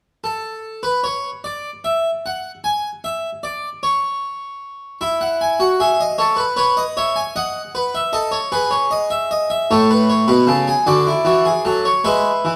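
A brilliant, airy French-style harpsichord with three sets of strings sits up front, playing a lively, joyful baroque-style three-part fugue in a straight 6/8, its plucked tone ringing through a moderate recital hall reverb in this close, detailed excerpt from a longer piece.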